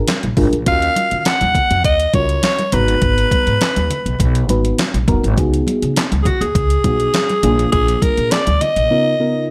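Early-eighties boogie funk with a late-night, funky mood, cut from a longer piece and moving in a straight 4/4 feel. A mellow FM electric piano opens the track at 0.0 seconds, its soft, round tone colored by chorus and phaser, with a faint noise layer and a fast attack that decays into the harmony. A clean 12-bit digital drum machine sits up front with a thumpy kick, fat snare, hi-hat and handclaps, its sampler-style sound given a tape-warm edge and a gated reverb. A plucked upright bass adds woody, dark gut-string lows, while congas with a thin, damped skin and soft hands sit in the background. From 0.7 seconds a breathy alto saxophone takes the melody up front, raspy and gritty with light vibrato and a slapback echo, carried over a progression that moves from Ebm9 through Abm9 and Db9sus4 to Bb7 and Db13, all set in a light small-room reverb.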